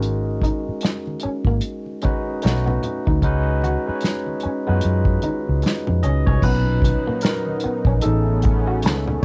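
A barky tine electric piano, lightly overdriven through a combo amp and sitting up front, accompanies this relaxed, smooth neo-soul and R&B clip, then takes a solo from 6.4 seconds. Underneath, a foam-muted fingered electric bass sounds round and dark. An unplugged acoustic kit played with bundle sticks supplies a punchy kick, a medium-tuned snare and dark cymbals, while low-tuned, thin-skinned congas sit very quietly in the background. An electric guitar through a small old amp adds a twangy, slightly broken-up second line from 0.4 to 8.8 seconds. At 6.4 seconds a lush, thick unison pad of detuned sawtooths with chorus and phaser enters on slow-attack sustained chords, as the harmony moves from Bmaj7 to Amaj9#11. The recording has a dry, intimate home-cassette character, with tape colouring the piano, drums, guitar and pad over a loosely swung sixteenth-note feel.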